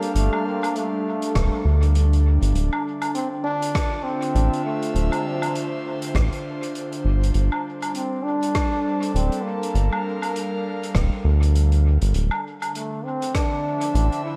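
Ambient dub with a spacious, deep mood, this short passage cut from a longer piece moves at an unhurried pace with a gentle swing on the sixteenths. A close-miked solo trombone carries the melody in a classical style, its soft attack and light vibrato trailing off into dub echo. Beneath it, an airy, breathy pad holds sustained chords with a detuned shimmer of chorus, drifting through Gsus2, Dm9, Gm9 and back to Dm9. A distant, roomy soft-mallet kit ticks out hi-hat, rim click and woodblock through its own dub echo, while a round, dark analog bass sits up front from 0.2 seconds and an overdriven electronic kick joins at 1.4 seconds before dropping out at 13.5 seconds. The whole dreamy mix is soaked in a lush hall reverb.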